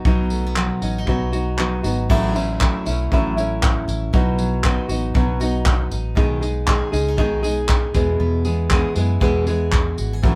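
Acoustic pop with an easy-going, sunny mood and a gently swung sixteenth-note feel, this short cut from a longer piece moves through a light chord sequence of B, A6, B, G#m/B and E. Up front, a classical nylon-string guitar is fingerpicked as the main accompaniment, and its tone is warm. Behind it, a full-bodied jumbo steel-string acoustic guitar is picked in arpeggios and sits in the background. A vintage fingered electric bass, foam-muted and amped, gives a dark, round, punchy low end. A soft brush drum kit with a smooth tone and a punchy kick comes in at 0.1 s, adding crash cymbal, handclaps and tambourine in a studio room. Light reverb gives the whole take the feel of a band playing live together in one room.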